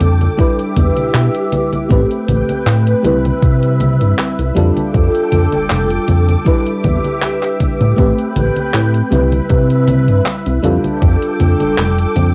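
A faded, dreamy vaporwave cut at 79 BPM opens with a lush FM electric piano and its soft pad layer, bathed in subtle chorus, cassette tape and analog delay, over silky string-machine chords with sampler grit and a dark, glossy chorused synth bass sitting up front. A detuned 8-bit drum machine with congas, handclaps and hi-hat runs throughout with a gentle 16th-note swing, joined at 0.4 s by a thumpy electronic kick that drops out at 11.2 s. The chords cycle through Em7, Am9, Cmaj7 and F69 twice in this short excerpt, all captured in a small, homespun room with a tape-worn character.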